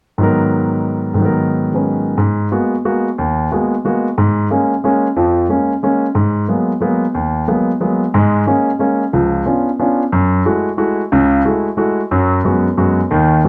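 Intense yet cool, this short solo piano jazz piece moves at a brisk 181 BPM in 3/4, with a swung eighth-note feel that gives the waltz time a restless lilt. A grand piano carries everything alone from 0.2 seconds to 13.5 seconds, its tone warm and placed up front, ranging from deep bass notes up into the middle register. The harmony rocks between G#m9 and A#m7 over a G# bass in G# dorian, then a C#7b9 chord pulls the music toward a shift into F# dorian at 10.1 seconds. There the piano settles onto F#m9 and G#m7 over F#, recasting the same rocking idea a step lower. A moderate, roomy studio reverb surrounds the piano, and the clip is cut from a longer performance.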